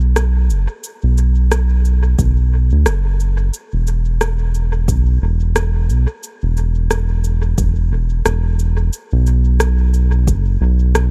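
Spacious and meditative, this short ambient dub fragment, cut from a longer piece, moves with a loose, swung sixteenth-note feel in 4/4. A round analog bass sits up front from the very start, its detuned blend of sawtooth, sine and triangle tones giving a deep, sustained presence with a fast attack, ranging from E1 to D2. At 0.2 seconds an electronic rim click and cabasa enter at a lower level, their produced sound trailed by dub echo. A deep electronic kick drum joins at 2.2 seconds and stays in the background until 10.4 seconds. The digital ambience and shadowy, warm production surround the parts with a sense of space.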